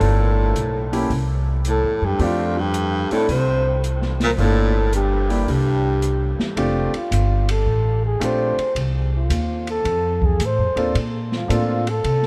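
Swung eighths in 4/4 give this playful small-group jazz passage, rooted in swing and bop, its easy lilt. The upright bass sits up front with a woody, growly pizzicato tone, while the open jazz drum kit adds dark, smooth hi-hat, ride and snare over a boomy kick, its top rolled off. A breathy flugelhorn, close-miked with a soft attack and scooped notes, carries the melody above a clear baritone saxophone second line with vibrato, which stops at 6.4 seconds. A warm concert grand piano with deep bass supplies accompaniment from the start until 11.8 seconds, and from 6.6 seconds the flugelhorn takes a solo. The ensemble sounds as if heard in a vast, echoing space, with a huge ambient reverb lending a long, lingering tail.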